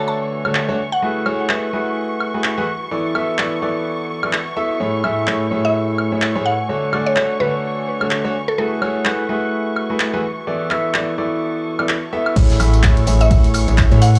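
A bright, up-front concert grand piano drives this uplifting piano house excerpt at 127 BPM in A major, its riff pumping against the sidechain over Dmaj7, F#m11 and E7sus4 chords, while a woody, round synth pluck with chorus and analog delay adds brief melodic phrases. Muted, veiled strings and a very quiet, warbling tape-like pad sit far back, and an overdriven analog drum machine with handclaps, hi-hat, ride, tambourine and woodblock carries the swung groove from 0.5 seconds. At the drop at 12.4 seconds, a dark, hollow FM bass, a punchy overdriven kick and a faint soul drum kit join, all heard through a gritty, cassette-tinged recording with light reverb.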